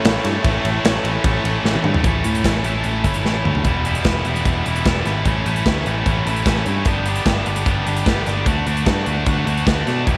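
A big rock drum kit drives this gritty, swaggering classic rock excerpt at 150 BPM in a straight 4/4, its punchy kick, medium-tuned snare and bright cymbals sitting up front with hi-hat, ride and toms in a big room. Two tight distorted electric guitars play riffs throughout, one up front and one slightly quieter, both picked and bright with a raw edge. A picked electric bass adds a growly, punchy low end in a direct and amped tone. For the first 2.0 seconds a soft string machine hangs in the background with silky, mellow sustained chords colored by phaser and ensemble chorus before it stops. Drum fills mark the turns into new sections at 1.6 and 3.2 seconds, and from 3.6 seconds the harmony moves through Em, A, G and D, all under a light reverb.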